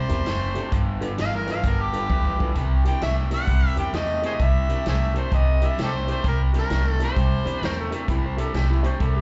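Heard as a live club gig through the venue's PA, this excerpt sits in a roomy, reverberant space with a dulled top end. It is a soulful, laid-back electric blues shuffle at 130 BPM in 4/4, swinging on C mixolydian over C7 and G7 chords. A mellow, distant harmonica carries the melody in a jazz style, its overdriven tone full of tongue slaps and scooped notes. It opens with a solo until 2.6 seconds, while a drum fill on the vintage acoustic kit, with its punchy kick and medium-tuned snare, leads into the next section. Underneath, a bright, crunchy overdriven guitar picks a low riff, and a pizzicato upright bass with steel strings sits up front. A dark, woody upright piano with long sustain lingers in the background, and at 7.7 seconds a clean, compressed lap steel guitar, played with fingerpicks and a slide, adds a second line with slapback echo.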